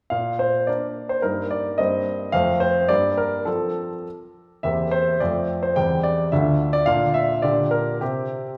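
Heard in a wet recital-hall reverb with a 1.4-second decay, this short clip from a longer classical-period piano sonatina sounds playful and cheerful, moving at 106 BPM in 2/4 with a rubato feel in Bb major, tuned to A4 = 441 Hz. A clear, polished baby grand piano plays solo and up front from 0.1 to 8.6 seconds, spanning D2 to G5. The harmony passes through Bb, Eb/G, Cm7/G, F, Gm and C7/E before reaching Dm, Bb and Gm/Bb, and the chords stop at 8.0 seconds.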